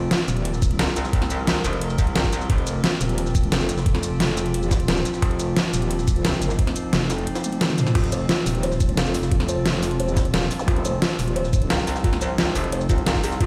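Aggressive and futuristic, this excerpt of dark technical drum and bass runs at 176 BPM, with an eerie, inharmonic FM drone holding sustained chords in the background under two metallic, wobbling FM basses, one distorted and bright, the other saturated, both up front with chorus. Layered electronic drums drive it, pairing a knocking kick with a dubstep kit of deep snare, metallic hats, shaker, toms and crash, while a gritty, pitched-up jungle sampler kit with a high-tuned snare sits very quietly beneath, and a drum fill lands at 7.4 seconds. At 8.0 seconds a boxy, felt-muted upright piano with audible action noise enters in the background with delayed, pumping arpeggios, a brief electronic zap flicks past at 10.6 seconds, and the whole track sounds as if played through a big system in a bare stone room with a faint mains hum.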